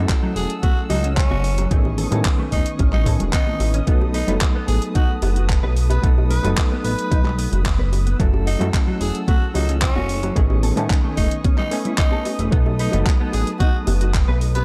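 A raspy, growling tenor saxophone carries the melody from 0.4 seconds in this sunny, feel-good nu-disco excerpt at 111 BPM in B mixolydian, riding over a knocking, up-front electronic kick, an overdriven pop kit with handclaps and hi-hat, a glossy, dark pulse-wave synth bass with filter sweeps, a reedy, gritty electric piano with fast tremolo, sidechain pumping and tape echo, a clean, fingered electric guitar riff with ensemble chorus, veiled con sordino strings holding chords in the background, and very quiet congas and bongos, all set in an echo-heavy mix over a repeating F#m7, Amaj9#11 and B7 progression.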